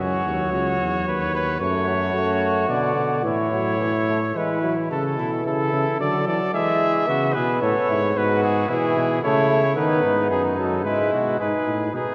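A clear cornet with light vibrato carries the melody up front in this lively, elegant excerpt of a classical imitative canzona for brass ensemble in A major at 110 BPM in 3/4, joined by a bright trumpet on the second line, a distant, roomy trombone in accompaniment and a punchy bass trombone anchoring the bass, all bathed in wet cathedral reverb and the warbling pitch drift of worn old cassette tape as the harmony moves from F#m through Bm and E to A before a second section gives way to G#m near 11.4 seconds.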